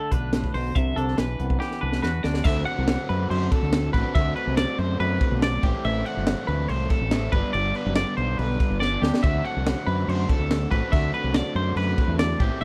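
A small, pumping room surrounds this short cut from a longer math rock and midwest emo piece, with the drums and the growling, overdriven fingered bass sitting up front. At 142 BPM in a straight 4/4, the mood is intricate and bright over chords such as Bm7, Cmaj9#11, D13, Am7 and G. A bright, clean, picked electric guitar carries arpeggios in its upper register throughout, bathed in lush chorus, while a second compressed, twangy guitar with the same chorus plays accompaniment for the opening moments. At 2.4 seconds a double-tracked, biting overdriven guitar enters with a riff coloured by spring reverb. The crisp fusion kit, with its high-tuned snare, punchy kick, hi-hat and crash cymbal, drives the groove and marks the section change with a fill starting at 1.6 seconds and another near 8.8 seconds.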